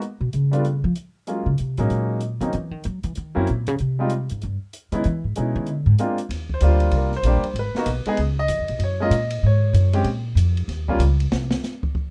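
This is a swinging, sophisticated jazz piano trio at a brisk 191 BPM in 4/4, with swung eighth notes, cut from a longer piece. The upright bass carries the opening solo from 0.0 to 6.3 seconds, its pizzicato steel strings sounding woody and up front, and it sits as the most prominent voice in the mix. At 6.3 seconds the clear concert grand piano takes over the solo, its natural tone carrying a deep bass quality while staying forward. The acoustic drum kit, heard in a small room on hi-hat, ride, snare and a boomy kick, stays well back with dark cymbals and a rolled-off top. The harmony moves through chords such as Gb7, Dbm7 and Ebmaj7 with brief chordless passages, all wrapped in light reverb.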